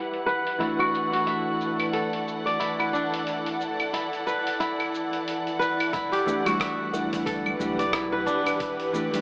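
Organic downtempo with an earthy, hypnotic mood, this excerpt opens on a fingerpicked kora playing crisp, ringing arpeggios up front, carried through digital delay. Beneath it, a dark studio string section holds bowed, woody chords with light vibrato and soft attack, while a clean, mellow electric guitar adds compressed accompaniment; both strings and guitar pump against a sidechain, and the guitar also passes through delay. A dusty soul sampler-style kit enters at 0.1 seconds with cabasa, claves, hi-hat and rim click, sounding gritty and compressed, its parts muffled by low-pass filtering, over a swung sixteenth-note feel. A filter sweep runs across the opening section, and at 5.9 seconds a round, sine-like sub bass and a thumpy electronic kick arrive in the background, joined at 6.5 seconds by very quiet, bright congas and bongos played with hard hands. The whole mix sits in a huge ambient reverb with a filtered, AM-radio tone, moving between Emadd9 and D/E harmony.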